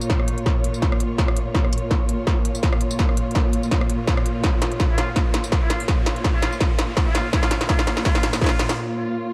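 A half-time drum and bass groove at 166 BPM in 4/4 swings lightly on the sixteenths, setting a dark, spacious mood in Bb minor over a Bbm chord. A distorted electronic kick sits up front from 0.1 seconds, while an industrial kit adds a clanging snare, crisp hats, rim clicks and tambourine, building through a drum fill that runs to 8.8 seconds. Underneath, a lush symphonic string section sustains bowed chords with smooth vibrato, pumped by sidechain compression. A very quiet electronic riser creeps in at 1.9 seconds, and at 4.9 seconds a nasal, straight-muted trumpet enters in the background, playing around F4 with light vibrato and tape echo. The drums give way to a brief break just before this build-up, cut from a longer piece, ends at 9.3 seconds, with the dark, warm production carried by light reverb and digital ambience.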